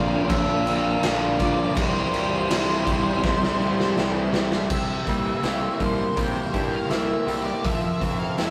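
Wistful and blissful, this excerpt of shoegaze and dream pop rock moves at 82 BPM in C mixolydian, with a dark octave-fuzz lead guitar singing its melody through tape echo over an icy, crystalline glass pad with chorus, a shimmering, boxy twelve-string acoustic picking arpeggios, an overdriven semi-hollow guitar, a lo-fi riff from an electric guitar through a small old amp, a double-tracked distorted electric guitar that drops out at 4.7 seconds, and a growly fuzz bass, while a punchy, gritty garage drum kit enters at 0.3 seconds and plays a fill from 3.2 seconds, all caught in a rough rehearsal-room recording soaked in wet stone-room reverb as the chords move from Bbadd9 through C and C7 to Fmaj7.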